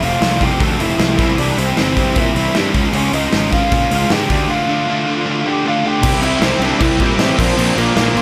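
Rowdy and upbeat, this punk rock piece at 155 BPM sets a lo-fi, overdriven lead guitar from a small cranked amp over a bright, tight distorted rhythm guitar, a warm, hollow-bodied semi-hollow guitar tucked in the background, a growly fuzz bass and a big, up-front acoustic drum kit with a punchy kick and bright cymbals, while a double-tracked, compressed fuzz guitar joins at 6.0 s as the second section begins, in a dry mix with little reverb.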